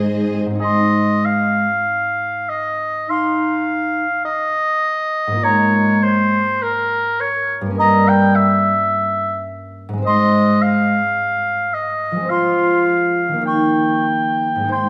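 Set in a reverberant recital hall, this short passage from a longer slow romantic orchestral movement feels serene and warm, its uneven, rubato pulse breathing freely. A bright, ringing concert harp opens with fingerpicked arpeggios at 0.0 seconds, and at 0.6 seconds three woodwinds join with second lines: an airy, mellow silver flute with gentle vibrato high above, a distant, roomy oboe placed up front, and a close-miked clarinet with a soft attack beneath. The harmony settles on the home chord, drifts through a diminished colour and a minor chord, then leans toward a dominant seventh as the passage is cut off at 14.9 seconds.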